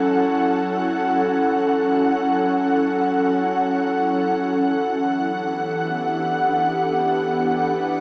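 Ambient music in free time and E dorian, spacious and melancholic, cut from a longer piece and lasting 8.0 seconds. A lone ethereal, airy pad plays throughout, its detuned unison sawtooth and triangle tones entering with a slow attack and sustaining with a long release, mellow yet up front, thickened by ensemble chorus, built-in reverb and tape echo as it moves from F#m7 to Em7 at 4.3 seconds. A huge, wet reverb with an 8.1-second decay surrounds it, though the overall sound has the quality of a small speaker.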